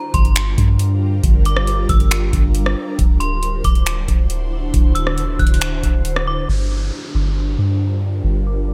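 This atmospheric cloud-rap excerpt drifts at 137 BPM in a half-time 4/4 feel, hazy and ethereal in G dorian, as a metallic, inharmonic FM bell rings out a high melody with chorus and delay over an airy, detuned pad carrying sustained chords through phaser, built-in reverb and sidechain pumping. A soft, round 808-style bass sits up front with a booming analog drum machine of deep kick, metallic hats, finger snaps and rim clicks bathed in gated reverb, until the drums stop at 6.3 seconds. From 6.5 seconds a downlifter and a filter sweep carry the bright 1980s-style digital production back to Gm7.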